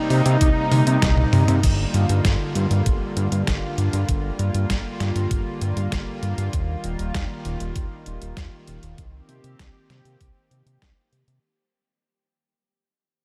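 Lightly reverberant and tape-tinged, this nostalgic, cinematic synthwave passage in G minor moves at 98 BPM in a straight 4/4. A thick, detuned sawtooth lead with vibrato, chorus and diffuse ambient delay sounds a single bright note only until 1.5 s, over a shimmering pulse-width pad that pumps beneath sustained chords moving from Cm7 through Gm7 and Ebadd9. A fat, evolving analog bass sits up front and carries a filter sweep through the fade-out that begins at 1.6 s, while a detuned 8-bit drum machine with a medium-tuned snare plays a fill before that point, and a thumpy sampler-style kick, re-recorded in a small room, thuds underneath.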